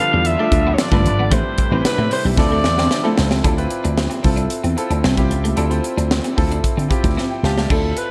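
Urban and bittersweet, this short cut from a longer piece is polished 1980s jazz-funk pop at 113 BPM in a straight 4/4, set in D dorian over chords moving from G7 to Am9 to Dm7. A growling alto saxophone carries the melody with a raspy, breathy vibrato and a touch of digital delay, sounding from the start to 3.1 seconds and returning at 7.4 seconds. Beneath it, a brilliant concert grand piano with analog chorus plays accompaniment throughout, while a clean, picked electric guitar sits in the background with a riff treated with ensemble chorus. A very quiet, smooth sawtooth pad holds sustained chords only until 3.4 seconds. Up front, a punchy slap bass runs through an envelope filter with a growly, amped edge, matched by an airy fusion kit with a high-tuned snare, punchy kick and gated reverb that lands drum fills at the close of each section. The whole mix carries a bright digital 1980s studio sheen with light reverb.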